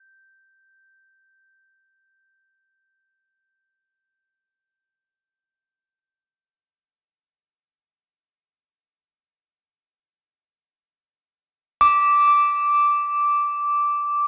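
A lone crotales strikes at the very start and returns at 11.8 seconds, its high, shimmering, bell-like tones struck with hard rubber mallets and carried on a delay through a moderate church reverb in this dark, haunting, meditative free-time world piece cut from a longer work.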